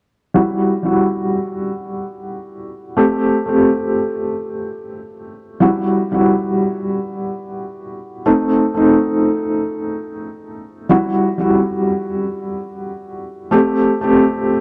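Melancholic and smoky, this trip hop excerpt in free time and E harmonic minor, tuned to A4 = 441 Hz, centres on a soft, felt-muted upright piano that sits up front as accompaniment from 0.3 to 14.6 s, its mellow, intimate tone shaded by tremolo, a low-pass filter and tape echo as it moves through Emadd9, Am7 and Adim chords, all set in a moderate plate reverb on a dry, gritty hardware recording.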